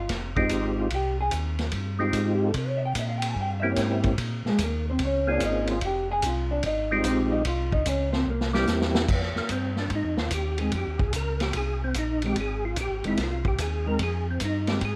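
A hollow-body jazz guitar, clean and fingered, takes a soloing turn over a round tonewheel organ bass with slow rotary speaker and a punchy, dark-cymbaled vintage drum kit in this soulful, late-night soul jazz organ trio excerpt, before a drum fill at 8.3 seconds hands off to a percussive organ solo with third harmonic percussion and chorus vibrato from 9.1 seconds, all over a swung minor progression in light reverb.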